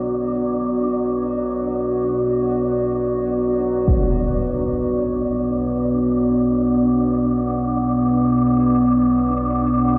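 In free time and B minor, this cavernous, ominous dark ambient drone, cut from a longer piece, sets an up-front, detuned analog pad holding a lush-chorused Bm chord over a deep, rumbling, wave-folded drone that fades in across the full 10 seconds, while a breathy, wind-like tuned noise texture hovers on D4, barely audible bronze gamelan-type bossed gongs ring until 3.9 seconds, and a huge, muffled impact lands at 3.9 seconds, all of it set inside a vast, echoing space.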